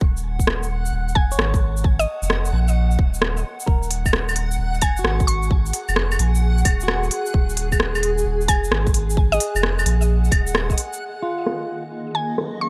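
Melancholic and ghostly, this future garage passage moves in a swung 4/4 over Eb minor chords. From the start, a deep, round sine sub bass pumps under a tight, layered electronic kick, while an organic electronic kit of crisp hats, claves, rim clicks and shaker sounds overdriven, filtered and re-recorded in a large room. A reversed, detuned texture swells high above with a dreamy, bright glow, and from about 1.2 seconds a woody FM pluck with a mallet-like attack carries the melody through chorus and tape echo. A clean, hollow-body electric guitar sits in the background with its own tape echo and pumping. At 5.8 seconds a cloudy, evolving granular pad arrives with slow-attack sustained chords that pump beneath its built-in reverb, and the bass and kick stop near 10.8 seconds as the passage drifts into a brief closing section.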